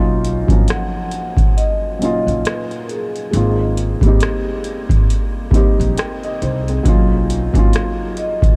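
Lo-fi hip hop at 68 BPM in 4/4 with a swung 16th-note feel, dreamy and cosy in mood, taken from a longer piece. A felt-muted upright piano opens at 0.0 s, soft and intimate with audible action noise, sitting up front under a low-pass filter. The upright bass starts with it, plucked, woody, growly and thumpy, with a dark steel-string tone. A booming analog drum machine enters at 0.2 s as the loudest part, with a deep kick, metallic hats and rim clicks, tape-warm and re-recorded in a small room. At 0.7 s a vibraphone played with soft mallets takes the melody, quieter and airy, its ringing tone shaded by a slow motor vibrato, a low-pass filter and tape echo. The harmony moves from Bmaj9#11 to Abmaj13 and back, and the mix sits in light reverb with small room ambience.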